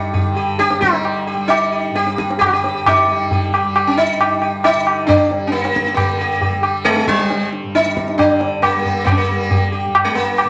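This short excerpt of Hindustani classical music opens at once with a sitar and a tanpura, with the tabla joining at 0.1 s. The mood is introspective and solemn, set in a seven-beat cycle with a straight feel, and the pace quickens steadily throughout. The bright, plectrum-plucked sitar carries the melody up front, its buzzing tone and sympathetic strings giving it a shimmering halo. Beneath it, the softly plucked tanpura sustains a quieter, warm and buzzing drone with a shimmer of its own in a lower register. The low-tuned tabla sits forward in the mix with a short ring, its sound compressed and saturated. A new section begins at 6.0 s, and a wet studio reverb surrounds the performance until it is cut off at 10.5 s.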